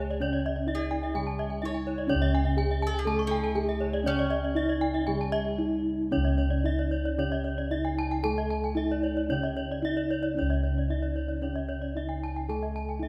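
Gamelan in C# pelog at 113-127 BPM in a straight 4/4, this shimmering, brilliant excerpt sets a mellow, airy bronze metallophone melody played with padded mallets over round, up-front bossed gongs in the bass and a dry, full, close-miked metallophone accompaniment struck with a wooden mallet. Two higher metallophones played with horn mallets spin bright arpeggios, their paired tuning producing beating shimmer. A woody, picked mandolin on double strings adds a second line from 0.7 to 5.5 seconds before the music moves into a new section at 6.1 seconds, all set in a moderate concert-hall reverb.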